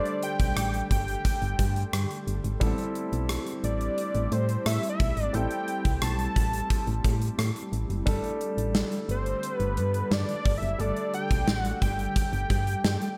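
A light studio reverb gives this short, glossy cut from a longer 1980s-style pop piece a polished, nostalgic sheen in a straight 4/4. Up front, a gated 80s drum kit sounds in a bright stone room with a punchy kick, a medium-tuned snare, rim clicks and hi-hat, joined at 0.4 seconds by a solid, round FM bass with a fast attack and a dark, decaying tone. A clear concert grand piano carries the accompaniment with intimate, audible action noise and long sustain. Behind it, an ethereal pad holds sustained chords, its slow-attack, detuned tones softened by ensemble chorus, built-in reverb and tremolo. Over the Gsus2 and Am7 changes, a fat analog sawtooth lead sings the melody with vibrato and a trailing delay.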